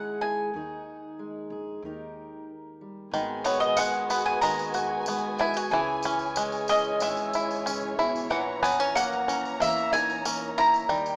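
A straight 4/4 pulse at 93 BPM carries this wistful, melancholic acoustic folk excerpt in G# minor, where a mellow, round mandolin melody sits up front over full-bodied fingerpicked steel-string guitar and a woody, thumpy pizzicato upright bass in the background, until at 3.1 seconds a twangy banjo arpeggiating up front, a dark bowed string section with soft-attack vibrato and a jingly tambourine join, all heard through light small-room reverb in a rough home-demo mix with a small-speaker sound.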